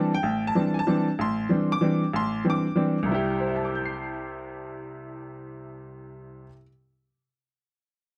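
A bright, woody upright piano opens this short jazz fragment on its own, sitting up front and sounding brilliant and natural as it comps through a swung triple-time pulse across a broad range. It rests on a D9sus4 chord before settling onto C at 3.1 seconds, giving the passage a spiritual, open mood. Light reverb and close, detailed miking keep the piano clear and intimate in this brief cut from a longer performance.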